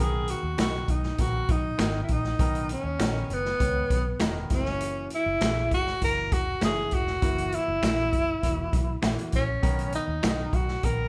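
Uptempo 1960s-style soul at 100 BPM in B major, this danceable, warm excerpt from a longer piece moves from Bmaj7 to F#7 and back over a straight 4/4 feel, with the band playing live in one room under light reverb. A breathy, whispered tenor saxophone carries the intimate jazz-style melody up front with vibrato and scooped notes, while a big-band drum kit with a punchy kick, hi-hat and snare sits forward and a dark, round, foam-muted fingered electric bass holds the low end. A concert grand piano with deep bass accompanies in the background alongside human finger snaps, and a very quiet, slightly broken-up, lo-fi electric guitar adds picked stabs from 0.6 seconds.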